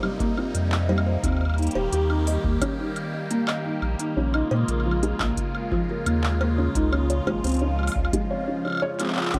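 A felt-muted upright piano spins soft, mellow arpeggios with audible action noise and tape echo through an intricate, glitchy IDM passage, over a round, deep sine sub bass up front, a swirling, detuned sawtooth pad drenched in phaser, chorus and shimmer reverb, and an organic electronic kit of woody snare, crisp hats, handclaps, cowbell and woodblock with analog delay, while an overdriven analog kick drops out at 8.3 seconds before a drum fill at 9.2 seconds in this echo-heavy cut from a longer piece.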